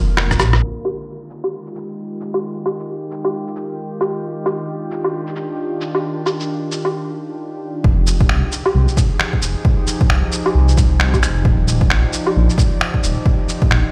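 Rainy and ghostly, this swung future garage excerpt at 133 BPM in F dorian drifts on a warbling, nostalgic tape-like pad of sustained chords with sidechain pumping, beside muffled, pitched-down electronic finger snaps, rim click, shaker and woodblock, as a filter sweep runs through the first half into a brief break before a deep, rumbling detuned saw bass and a punchy, overdriven electronic kick drum return at 7.8 seconds, the whole mix bathed in a bare stone-room reverb.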